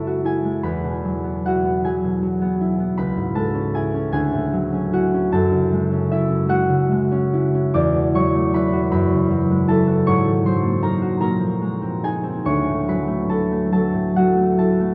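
Bathed in a wet cathedral reverb with a long 6.5-second tail and set within a dark, warm production, this brief classical excerpt features a solo concert harp, up front and ringing, its thumb-plucked tones spanning from C#2 up to D6. In F# minor and a lilting 6/8 at about 51 BPM, the graceful, serene playing breathes with rubato and uneven beats. Lush extended chords drift from F#m9 through Dmaj9 into a climbing series of suspended ninths before settling back on Dmaj9 near 12.5 seconds.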